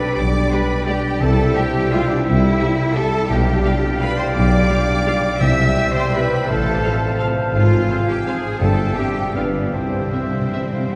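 Sweeping and festive, this orchestral ballroom waltz in 3/4 moves with a rubato lilt, heard as a short cut from a longer piece. A very quiet, distant violin section carries the melody with vibrato, portamento and a soft attack, while a second, closer violin section, clear oboe, clear clarinet and a silver concert flute in the background weave supporting lines. The rich cello section sits up front on the bass with the warm double bass section and a mellow tuba, as a mellow bassoon and a rich viola section fill the accompaniment and a very quiet French horn section holds sustained chords. A ringing, fingerpicked concert harp spins arpeggios, and timpani with calf heads mark brief strokes before a fill from 9.7 s to the close at 11.0 s. The harmony travels from G/B to C and through F/A and Fm/Ab before settling back on C, all in a dark, warm production bathed in a wet cathedral reverb with a long tail.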